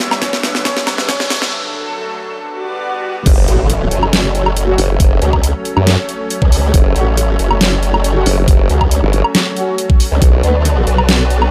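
A half-time 4/4 pulse at 138 BPM drives this heavy, aggressive wobble dubstep excerpt in F# phrygian: a clear baby grand piano melody, a lush detuned unison pad with chorus and sidechain pumping, an overdriven dubstep kit with deep snare, bright hats, crash and woodblock, an up-front knocking electronic kick, and a background riser, swell and impact set up a build-up and break before the drop at 3.3 seconds, where two overdriven formant-sweep wobble basses, one sawtooth and one detuned pulse wave, surge over the F#m harmony with tight, mellow brass ensemble stabs in the background, all framed by digital ambience.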